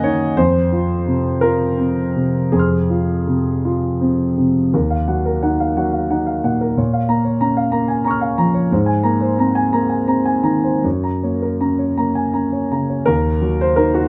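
A dark, mellow grand piano, boxy and up front, plays alone across Eb2 to F6 in this wistful, reflective fragment of a longer neoclassical minimalist piece in Eb dorian, drifting in a rubato 6/8 at about 51-65 BPM from Fm into Ebmadd9 at 4.7 s, then through Bbm, Abadd9 and Gb before arriving on Ebm at 13.1 s, set in a moderate studio reverb with a warm production.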